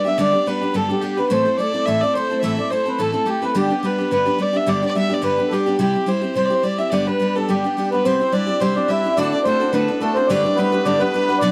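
Celtic folk reel, cheerful and lively, moving at 214 BPM in 4/4 with a light swing on the eighth notes and set in G major. A mellow accordion carries the melody with a reedy, darker tone and slow beating, touched by a slapback echo, while a single bowed fiddle, rich and nasal with an earthy character, plays a second line in the same register at a lower level. A bright, full-bodied picked steel-string acoustic guitar sits up front as the accompaniment, moving through G, Am, C and back to G before the second section turns to C, D and home to G. At 7.9 seconds a hammered dulcimer joins with a shimmering, ringing second line in a lower range. The sound is dry and close, in the manner of a 1970s studio, with only light reverb, and the clip is cut from a longer piece.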